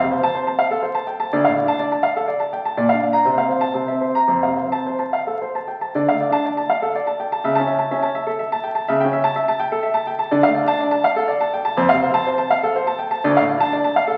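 Dance-like and serene, this excerpt of a baroque-style suite movement sways in triple time with a flexible, rubato feel. A solo baby grand piano carries the entire piece, its tone warm and open and placed up front, tuned slightly low to A4 = 438 Hz. The harmony settles into darker minor colors from 6.0 s as the opening material returns, passing through chords such as Dm and A7/C# before closing on Dm at 13.2 s. A generous recital hall reverb surrounds the instrument, while the sound of a very old 78 rpm record, with its vinyl crackle, gives the whole an aged, faded character.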